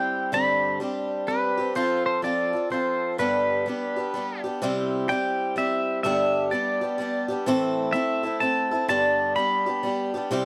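Nostalgic and down-home, this short country piece at 126 BPM in 3/4 swings its eighths as an up-front, clean electric pedal steel guitar carries the melody with fingerpicks, slide and volume swells over a bright, boxy picked acoustic guitar playing through Gsus4, F, G, C and Am in a dry, close 1970s-style studio sound.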